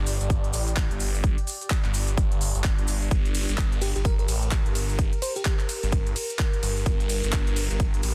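A thick, swirling detuned saw bass sits up front, saturated and phased, pumping with sidechain compression as it holds low on G minor through this swaggering, aggressive bass house excerpt at 128 BPM with a swung 16th-note feel. A punchy, layered electronic kick drives the groove, while a garage kit of handclaps, crisp hi-hats and ride cymbal carries a tape-warm tone, re-recorded in a large room. A very quiet, grainy tube shaker adds acoustic texture from a small room. Underneath, a warbling, nostalgic lo-fi pad with chorus, phaser and slow-attack sustain pumps softly in the background. From 3.8 to 5.5 seconds a sparkling, bell-like FM electric piano appears briefly with chorus, tremolo and dub echo, all within a dense, heavily limited modern master and digital ambience.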